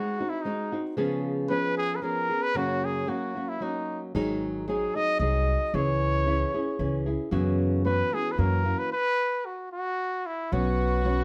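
Festive and proud, this short cut from a longer mariachi piece moves in a stately 3/4 at 113 BPM with a straight feel. A mellow trumpet carries the melody up front in a classical style, its solo line touched with light vibrato. A fingerpicked flamenco guitar sits equally close, supplying acoustic accompaniment through chords such as G#7, C#7, C#m and F#7sus4. At 4.1 seconds an upright bass joins with woody, thumpy pizzicato on gut strings, and a stop follows at 8.9 seconds. At 10.5 seconds a lush, bowed violin section enters softly in the background on a Bsus2 chord, all inside a moderate studio reverb.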